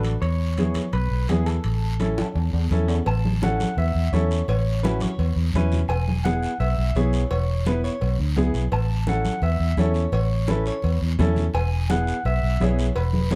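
Cumbia at 170 BPM in A major with a joyful, sunny mood, where a twangy, compressed clean electric guitar carries the melody over a bright, woody upright piano and a round, foam-muted fingered electric bass sitting up front, while raspy guiro, ringing metal-shell timbales and cowbell, and soft-handed congas entering at 0.6 s in the background drive the groove, with a drum fill from 2.2 to 3.1 s leading into the next section, all within a dark production and light reverb.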